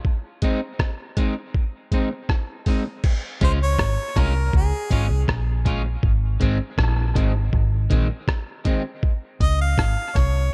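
A muffled, pitched-down sampler-style drum kit with a thumpy kick sits up front in this spacious, hazy dub reggae excerpt at 80 BPM in Db major, opening with a break where slightly broken-up, twangy electric guitar with subtle chorus and dub echo enters at 0.4 seconds, before a round, foam-muted vintage bass and a close-miked bright harmonica solo with light vibrato and its own dub echo arrive at 3.4 seconds, all within a dark production and light reverb.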